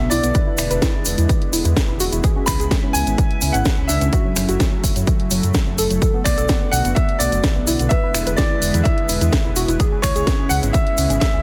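Progressive house at 127 BPM with an expansive, emotional mood, this short cut from a longer piece sets a brilliant grand piano melody with tape echo over a lush, warbling unison pad carrying sustained chords, treated with chorus, vintage 12-bit sampler grit and sidechain pumping, while a soft, round pluck spins arpeggios through analog chorus and digital delay. Underneath, a dark, rumbling detuned saw bass pumps beneath a punchy, overdriven kick that enters at 0.3 seconds and sits up front, joined by an overdriven house kit of finger snaps, hi-hat and a cracking snare, with a grainy tube shaker tucked in the background. The harmony moves through E7, C#m7, F#m7 and Bm7 in a dense, heavily limited modern mix bathed in digital ambience.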